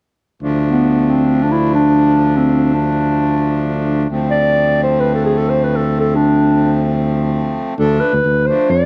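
A mellow, smooth-topped clarinet carries the melody up front in a classical style, entering at 0.7 seconds over a short klezmer fragment in D minor and free time that feels both bittersweet and festive. A dark, close-miked tuba holds the bass while a reedy, dry-tuned accordion with a boxy small-room character supplies accompaniment, the harmony moving from D minor to F6 over D at 4.1 seconds and back to D minor at 7.8 seconds. Cut from a longer piece, this home cassette recording sits in a moderate spring reverb, with tape coloring the clarinet and accordion.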